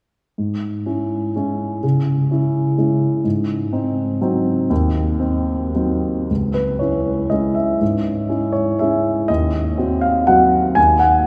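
Wistful and nostalgic, this short excerpt of a classical piano waltz in C# minor and 3/4 drifts with a rubato feel between 105 and 132 BPM, as a solo concert grand, warm and up front with a deep bass reaching from C#2 to G#5, plays from 0.4 to 11.3 seconds under a wet cathedral reverb with a 6.6-second decay, moving from C#m/G# and G#7 into C#m and Cdim/Eb as the opening section gives way to a second at 6.3 seconds.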